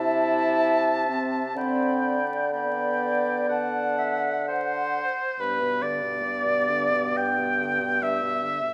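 A clear, vibrato-rich oboe sits up front on the second line of this slow, lyrical romantic movement for wind quintet in G major, moving with rubato at about 58-75 BPM in 4/4, while an airy, straight-toned flute carries the melody from the background, a dark, smooth-topped clarinet and a mellow, distant French horn fill out the accompaniment, and a soft-attack bassoon with light vibrato anchors the bass over an Am/C, G/D, D to G progression, all in a moderate recital hall reverb with vinyl crackle across this short excerpt cut from a longer piece.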